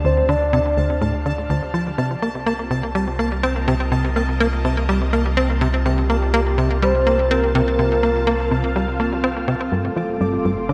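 Ambient, sequencer-driven space music with an expansive, hypnotic mood, heard as a short cut from a longer piece in a steady, straight 4/4. A tight, punchy sequencer bass drives a riff throughout, its ring-modulated, filter-plucked tone sitting up front with delay, while a deep, round sine sub bass holds the low end beneath it. A lush, vintage string machine sustains full ensemble chords with ensemble chorus, fading in across the whole passage as the harmony moves from Dm to Cm7 and lands on G5 at 9.7 seconds. A soft, octave-layered synth lead carries the melody with chorus, tremolo and delay, sounding briefly at the start and returning at 5.9 seconds with a dark, vibrato-tinged tone. High above, a bright, tempo-synced gated texture pulses with chorus and its own reverb, and the whole mix is echo-heavy, with a moderate spring reverb and the grain of cassette tape.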